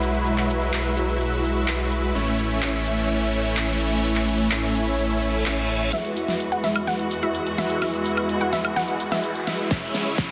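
A dense, heavily limited master with light digital ambience frames this euphoric, uplifting festival progressive house excerpt in E major at 127 BPM. Huge, bright supersaw chords with phaser, 12-bit sampler grit and dub echo sit up front over a thick, menacing detuned saw bass and rich, bowed symphonic strings, with all three pumping to the sidechain, while a big-room kit of huge snare, handclaps, hi-hat, shaker and woodblock plays under low-pass filtering. A reverse cymbal and riser arrive at 5.2 s, and at 5.9 s the bass stops as a build-up begins, bringing a drum fill, filter sweeps on the supersaws and a lush, wave-folded unison pluck arpeggio, before a punchy electronic kick lands at 9.7 s on a C#m chord.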